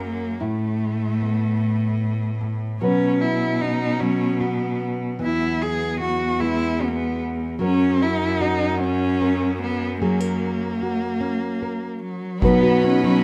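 In a slow, straight 6/8 at 50 BPM, this nostalgic, intimate acoustic folk-pop ballad in B major sets a dark, expressive bowed cello melody with portamento over thumb-plucked, full-bodied nylon-string guitar and a rich second cello carrying the bass, moving through Asus2, Bsus2, Eadd9 and F# to a break at 11.2 seconds before sul tasto chamber strings and a soft-mallet drum kit with boomy kick enter at 12.4 seconds on Badd9, all in light reverb, cut from a longer piece.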